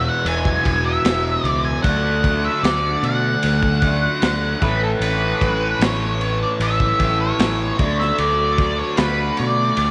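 Hazy and trippy, this psychedelic rock excerpt moves at a slow 76 BPM in straight 4/4 through E, D and A chords, with a dark, picked octave-fuzz lead guitar carrying the melody up front, colored by distortion and tape echo. Beneath it, a bright, double-tracked fuzz guitar plays a riff through distortion and phaser, a round fingered electric bass holds the low end, and a very quiet tonewheel organ sustains piping, scooped chords through a slow rotary speaker. From 0.3 seconds a crunchy breakbeat kit joins with a punchy kick, high-tuned snare and dark ride cymbal, its saturated, gritty tone rolled off at the top, all set in a small room with light reverb.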